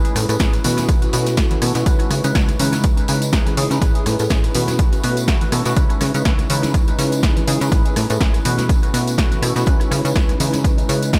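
An overdriven electronic kick sits up front from 0.4 seconds, punchy and analog, anchoring this nostalgic, groovy filtered disco house cut at 123 BPM in 4/4 with a 56% swing on the sixteenths, in C# minor. A worn, slightly out-of-tune tine electric piano plays the accompaniment from the start, lightly overdriven as if through built-in speakers and colored by phaser, sidechain pumping and dub echo as it cycles through Amaj9, B9sus4 and C#m7. A plucky analog bass enters at 0.2 seconds with a funky, evolving sawtooth and pulse-wave tone, its fast attack and decaying filter pluck pumping with sidechain compression. A punchy analog drum machine supplies hi-hat, rim click, snare and tambourine, its overdriven snare and pumping hats thrown into dub echo, while a very quiet, ringing acoustic tambourine and congas played with soft hands in a small room sit far back. The echo-heavy mix carries light reverb, and this short slice is cut from a longer piece.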